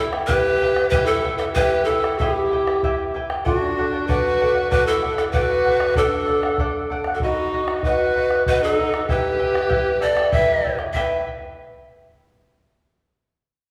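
Andean folk in 3/4 and E minor, festive and earthy, moving at 96 BPM and speeding up throughout this short cut from a longer piece. Large cane pan pipes carry the melody up front, breathy and reedy with a tongued chiff and vibrato, while a single bowed violin adds a focused, smooth second line and a fingerpicked charango shimmers on its doubled strings beneath. A round bombo enters at 0.1 s, and the whole ensemble sits in the wet reverb of a recital hall as the chords pass from Em through D and B back to Em.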